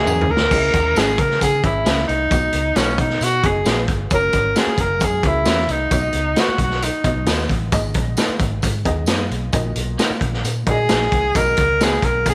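Uptempo 1960s-style soul at 133 BPM in a straight 4/4, set in C# dorian, this urgent, passionate passage is cut from a longer piece and opens with a half-second drum fill. A breathy tenor saxophone carries the melody up front, its soft attack, whispered tone and vibrato giving it an intimate, pop-style voice; it sings until 7.3 seconds, then returns at 10.7 seconds. Beneath it, a raw garage drum kit drives the groove with a boomy kick, a medium-tuned snare, hi-hat, crash and toms, all saturated and gritty with a rolled-off top. A foam-muted, fingered electric bass adds a round, punchy, vintage low end. A dark, woody upright piano sits in the background, slightly detuned and boxy with audible action noise, while a very quiet, twangy clean guitar adds picked stabs and a jingly tambourine shimmers behind. The chords move from F#7 to C#m, B, F# and G#m, then D#m/A# before settling back on B, all set in light reverb and small room ambience.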